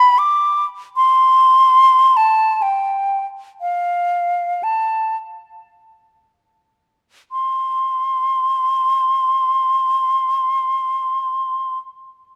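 A close, detailed recording with light reverb places a bright concert flute up front, its airy tone carrying vibrato, crisp attacks and lifted highs. This serene, nostalgic classical passage for unaccompanied flute moves in free time and stays in a high register from F5 to D6, slowing down through its first 7.3 seconds before a second section follows. Cut from a longer piece, the expressive solo runs for 11.8 seconds.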